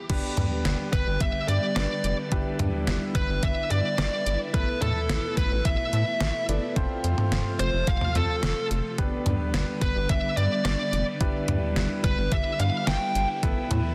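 A dense, heavily limited mix in a lush hall reverb carries this nocturnal, driving synth-pop excerpt at 108 BPM, where a thumpy, tape-warm 8-bit drum machine sits up front alongside a rubbery square bass, beneath swirling phased string-machine chords and a clear, intimate grand piano with audible action noise, while a smooth overdriven lead guitar with digital delay enters at 0.9 seconds to carry the melody over a G, Em7/G, Asus2, F progression.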